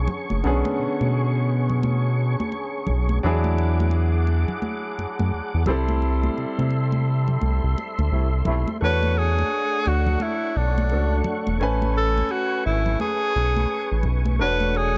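Introspective and soulful, this neo-soul R&B groove moves at 86 BPM with a swung sixteenth-note feel, built on a round, dark analog bass sitting up front, a clear concert grand piano with natural low end, and a lightly overdriven tonewheel organ holding sustained chords through chorus vibrato, key click and a slow rotary speaker. Congas with a thick, medium-tuned skin sit close and dry in the background, and the band hits an accent from 6.0 seconds. A mellow, distant trombone section punches tight stabs at 8.1 seconds before a breathy, intimate tenor saxophone takes the solo melody at 8.8 seconds, with soft attacks, scooped notes and gentle vibrato over lush extended chords in a small room ambience.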